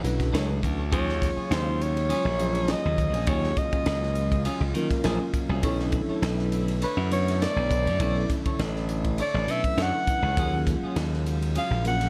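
This funky, slick slice of electric jazz fusion opens with a crisp drum kit, its high-tuned snare and punchy kick set in a small, pumping room, while a glassy slap bass stands bright and up front beneath it. A mellow tine electric piano accompanies through a lush chorus, a clean electric guitar adds stabs from the background with chorus and plate reverb, and a thick, warbling sawtooth pad holds very quiet sustained chords underneath. At 0.9 seconds a breathy soprano saxophone takes the solo, close-miked with vibrato and a soft attack, its jazz-style line colored by plate reverb and tape echo. The harmony moves between Bm11 and Ebm11, and the sixteenths carry a subtle swing. The production is dark and warm with light reverb, and the passage is cut from a longer piece.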